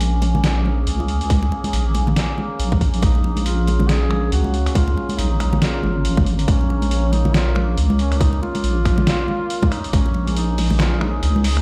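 Deep dubstep in Bb minor at 139 BPM, with a swung, half-time feel and a brooding, cavernous mood, in a short cut from a longer piece that rests on a single Bb minor chord. A deep, soft wobble bass sits up front, dark and saturated with a detuned, chorused tone, while a nasal drone with moving overtones holds sustained chords behind it, slow to bloom and long to fade in its own reverb. A gritty, pitched-down sampler kit of finger snaps, handclaps, hi-hat and snare carries a tape-warm grain, joined by bright, damped congas set back in the mix and a tight, layered electronic kick that plays from 1.3 to 10.0 seconds. At 3.0 seconds a mellow duduk enters in folk style, its vibrato and scooped notes trailing dub echo. The whole track sounds as if played on a big sound system in a bare room, with large studio reverb and vinyl crackle.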